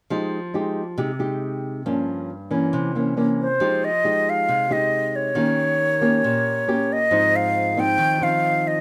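Lightly reverberant, this wistful, melancholic bossa nova fragment in F minor moves at 137 BPM, with a small, thumb-plucked nylon-string guitar carrying the Fm9, Gm7b5 and C7b9 accompaniment with audible finger squeak from the start, before an airy silver concert flute with a soft attack and an unsteady straight tone enters up front at 3.4 seconds to sing the melody over Fm9, Eb7 and Ab6.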